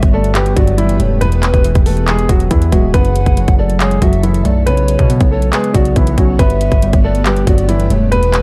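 A half-time trap groove at 139 BPM drives this menacing, eerie hip hop excerpt, its electronic kit pushed up front with a hard-clipped kick, metallic hi-hats and handclaps. Underneath, a distorted 808-style bass hits heavy and aggressive, its sine core roughened by a noise layer and decaying after each fast attack. A dark baby grand piano carries the melody from 0.1 seconds, its long sustain softened by a low-pass filter, while warbly lo-fi synth keys, detuned and chorused with a nostalgic wave-folded grit, fill in the accompaniment. A hollow, woody pan flute with a crisp chiff and rolled-off highs traces a second line through tape echo, and a blurred granular cloud pad drifts in the background with slow-attack chords and built-in reverb. The harmony moves from Gadd9 through E, F#m7 and Bsus2 before returning to Gadd9, all within a dark, warm digital ambience.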